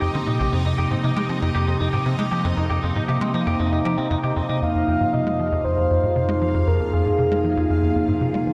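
Mysterious and hypnotic, this cut from a longer piece of ambient, sequencer-driven space music sets a tight, punchy sawtooth sequencer-bass riff under a bright, morphing wavetable pad with phaser, a bubbling, resonant stepped-filter texture and clean, twangy electric guitar arpeggios that stop at 4.6 seconds, when a breathy, flute-like synth lead with vibrato and 12-bit grit takes up the melody over a deep, round sub bass, inside a long plate reverb.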